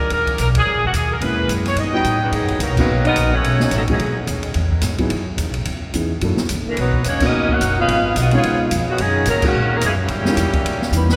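A clear, vintage-toned saxophone section carries the melody from the very start, tight and up front with light vibrato and a soft attack, over a woody, thumpy pizzicato upright bass on gut strings in this dramatic, sultry stretch of big band swing cut from a longer piece. An open jazz drum kit with dark cymbals, a high-tuned snare and a boomy kick drives the swing, and a warm concert grand piano with deep bass joins as accompaniment at 1.2 seconds. A mellow, loose trombone section with smooth top and vibrato sits in the background playing a second line, while a very quiet but present trumpet section adds a brief stab around 1.9 seconds. Band accents punctuate the arrangement, and the drums close with a fill at 10.9 seconds. Everything sits in a wet cathedral reverb with a long, hall-like tail that lends the lush harmony a spacious, dramatic glow.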